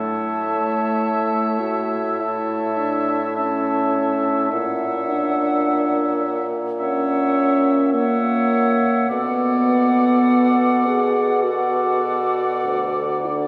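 Serene and tender, this slow, rubato romantic movement for wind quintet in A major moves at around 48-53 BPM, cut from a longer piece. A pure, distant silver flute with crisp attack and vibrato carries the melody over an oboe second line with light vibrato, while a mellow French horn sits up front in the accompaniment beside a soft-attacked clarinet in the background. A vintage-toned bassoon anchors the bass as the harmony shifts from A to F#7/A# at 4.5 seconds and Bm7 at 9.1 seconds, all bathed in the long, wet reverb of a cathedral-like hall.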